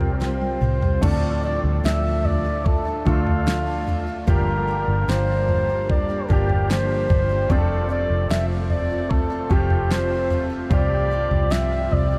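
A drum fill from a kit with a fat snare opens this longing, heartbroken pop ballad excerpt, while a mellow, distant flugelhorn carries the melody up front from the very start over a knocking kick, a round, foam-muted electric bass, and an intimate concert grand piano with audible action noise. Behind them sit a bright jumbo steel-string acoustic guitar picking arpeggios and a glassy, ethereal FM pad with chorus, all drifting through a dreamy, reverb-soaked mix that moves from Dm to Gm7 and F before settling on Csus4.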